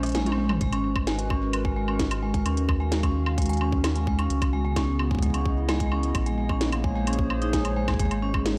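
This intricate, cerebral IDM excerpt opens on a short break, with a drum fill from the organic electronic kit and a band accent at 0.1 seconds, over a warbling, nostalgic pad and a round, deep analog bass. The lo-fi pad holds dark sustained chords with a slow attack and long release, softened by chorus and its own reverb. Beneath it the bass sits low, sawtooth and sine tones giving it a fast attack and sustained weight. A vibraphone with medium hard mallets spins metallic, ringing arpeggios with a slow motor vibrato and tape echo. From 0.6 seconds a tight electronic kick joins the woody snare, smooth hats, toms and woodblock as the main section moves through minor ninth chords. The whole has a dry, gritty hardware sound set in light digital ambience.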